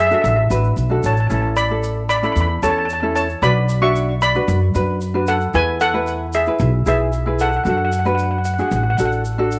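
Sunny and carefree, this short calypso passage moves in a straight 4/4 feel, led by a bright, shimmering steel pan struck with hard rubber sticks and touched with tape echo, while a woody, thumpy pizzicato upright bass sits up front beside it. A light, thumb-plucked tenor ukulele and a grainy egg shaker fill in beneath, with the pan dropping out at 9.1 seconds as the others carry on. A moderate echo chamber reverb and small room ambience frame the sound, and the harmony moves from D through Aadd9, Bm and E to D/F#.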